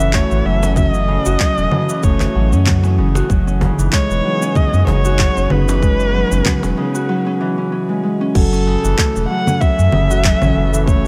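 Opening on an expressive bowed kamancheh melody with vibrato and portamento, ringing fingerpicked Celtic harp arpeggios, a nostalgic, warbling lo-fi pad pumping in the background and a round, deep analog bass up front, this mystical, earthy organic downtempo piece in F# dorian moves at 95 BPM with a lightly swung 16th feel over a layered deep house kit of congas, crash cymbal, handclaps and shaker, a tight electronic kick from 0.1 seconds and a snappy cajon in the background until 6.7 seconds, with shimmer reverb trailing the kamancheh, harp and pad before a break at 7.1 seconds.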